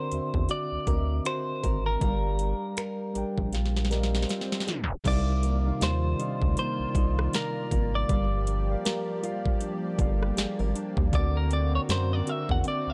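Contemporary R&B in C minor at 79 BPM with a swung sixteenth feel, moody and longing, where a compressed, picked clean electric guitar carries the melody through tape echo over a mellow tine electric piano and a fingerpicked nylon-string guitar whose echoed arpeggios sit in the background with audible finger squeaks. A rubbery, dark square bass and an up-front trap kit with a knocking kick, sharp snare, metallic hats, finger snaps and rim clicks drive the groove, while a background electronic swell and a drum fill from 3.5 s lead into a tape stop at 4.7 s. A lush, detuned unison pad with chorus then enters at 5.0 s under chords moving from D7b13 and Gm7 to Cm11, all in a dry, gritty recording.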